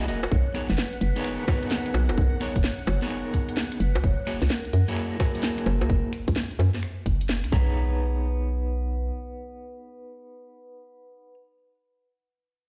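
A swung two-step garage groove at 129 BPM in 4/4 drives this sunny, bouncy fragment in B major, cut from a longer piece, with a tight, up-front electronic kick and a layered garage kit of cracking snare, hats, shaker, finger snaps and bongos running until about 7.5 s. Beneath it, a hollow, knocking FM bass with a fast, punchy attack and mellow decay bounces through the low register until 9.1 s. A dark, slightly broken-up electric guitar plays fingered stabs through tremolo and digital delay, lasting the whole passage, while a silky string machine holds soft sustained chords in the background, shimmering with phaser and ensemble chorus and pumping against the kick until 5.9 s. Over the top, a bright, airy vibraphone struck with hard mallets rings out a short melody, its metallic tone roughened by vintage 12-bit sampler grit and echoed by digital delay. The harmony moves from Bmaj13 to F#9 and back, and the mix is dry. 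After the drums drop out, the bass lingers briefly before the guitar and vibraphone carry the closing moments.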